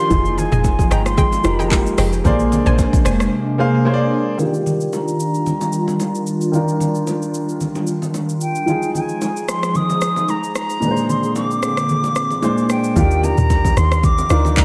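A swung amapiano groove at 112 BPM in 4/4 drives this soulful, warm piece in Eb major, built on an electronic afro-pop kit of deep kick, metallic hi-hats, handclaps, rim clicks, shaker and toms sitting up front, with bright, hard-handed acoustic congas and bongos tucked in the background. A round, dark log drum bass with a fast attack, decaying tail and a noisy FM edge anchors the opening, drops out at 3.3 seconds into a brief silent gap, and returns at 13.0 seconds. Over this, an intimate grand piano with audible action noise carries the accompaniment through chords moving from Fm9 and Bb9 to Ebmaj9, while a hollow, flute-like pad with a slow attack, detuned warble, ensemble chorus and sidechain pumping holds sustained chords. An airy, distant concert flute carries the expressive melody with vibrato and tongued phrasing through tape echo, and a bouncy, vintage square-wave pluck adds short stabs early on. 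A long filter sweep shapes the middle stretch before the drop returns, and a plate reverb soaks the mix in a dreamy haze.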